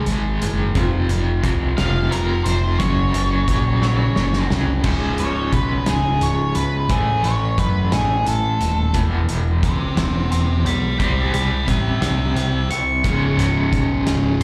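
A dark, fuzzed-out lead guitar with slapback echo and digital delay enters at 1.8 seconds and takes a solo from 4.8 seconds in this brooding, cathartic stretch of quiet-loud alternative rock in 6/8, cut from a longer piece, where an up-front crunchy guitar riff with tremolo, a growling overdriven bass, a faint bright twangy twelve-string playing arpeggios and a loose indie drum kit with punchy kick and dark cymbals are heard as a live club gig through the venue's PA, and a thick background fuzz guitar joins the riffing at 13.0 seconds.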